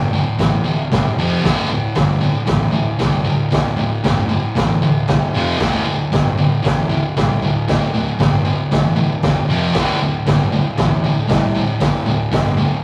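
A straight 4/4 groove at 116 BPM drives this menacing, gritty garage rock excerpt in D minor, tuned to A4 = 435 Hz. A crunchy breakbeat kit with a punchy kick and high-tuned snare comes in at 0.4 s, dark and saturated with a rolled-off top, sitting up front beside a thick, double-tracked fuzz guitar riff that grinds between D5 and F5 chords in a bright, distorted tone. Underneath, an overdriven picked electric bass hums in the background, all within the moderate reverb of a rough stone rehearsal room.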